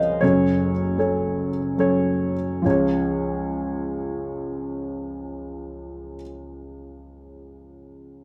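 A dark, worn upright piano carries the melody alone from 0.0 to 8.2 seconds, its woody, slightly detuned tone sitting up front with audible action noise and a slapback echo. This heartfelt, tender folk fragment in waltz time slows down over its opening 2.6 seconds, moving from a G-flat minor chord to a D-flat major chord as the second section begins. The close, dry 1970s-style studio sound carries a moderate touch of room reverb, giving the playing an intimate feel.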